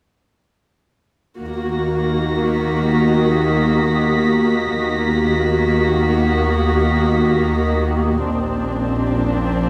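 Uneasy and eerie, this cinematic passage opens at 1.4 s with dark, intimate, sul tasto viola, cello and double bass sections, the violas up front and the basses in the background, while a detuned, warbling organ-like drone with ensemble chorus enters at 2.4 s and a high, softly bowed violin section with vibrato hovers above until 7.8 s, over an Ebm chord that moves to Bbadd9 in a moderate scoring-stage reverb.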